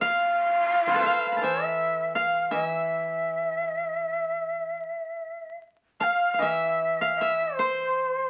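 Japanese traditional chamber music in a calm, austere mood with a free, rubato feel, heard as a brief excerpt from a longer piece. A breathy, reedy bamboo shakuhachi carries the melody up front with vibrato and a crisp, chiffy attack, while one fingerpicked koto plays a dry, woody second line and a second koto adds a soft, low accompaniment. The sound comes from a very old 78 rpm record with vinyl crackle, set in a moderate studio reverb, and the music moves into a new section at 6.0 seconds.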